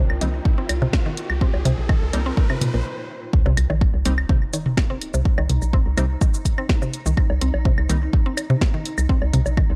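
A dark, warm production in digital ambience carries this cool, clinical minimal techno cut on a Cm7 chord. A riser and sub drop, a bouncy, hollow FM bass with sidechain pumping and a woody, bright mallet-like synth pluck riff coated in chorus, phaser and dub echo build up over a deep, moody ambient pad until a brief stop at 2.9 s. From the opening moments, a punchy, up-front kick and a house kit with cracking snare, hi-hat and shaker, both tape-warm and re-recorded in a large room, drive alongside analog electronic claves, woodblock and toms with digital delay. Crisp, detuned wavetable chord stabs and a swarming, tense, granular drone that enters at 1.2 s sit in the background. The drop lands at 3.3 s with an impact.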